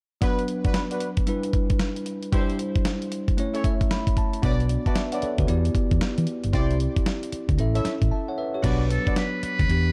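Dark, dry production frames this punchy, bouncy new jack swing R&B clip at 114 BPM in B minor, riding swung sixteenths over a Bm, Em7, Cadd9, A cycle. A gritty, compressed sampler-style drum kit with a thumpy kick sits up front beside a bell-like, clean tine electric piano that slips in a fill, while a horn section adds jazzy stabs through tape echo and a round, hollow-body fingered electric bass joins at 4.4 seconds. After a break at 8.1 seconds, a buzzy, breathy trumpet with a metal mute takes an intimate melody at 8.9 seconds.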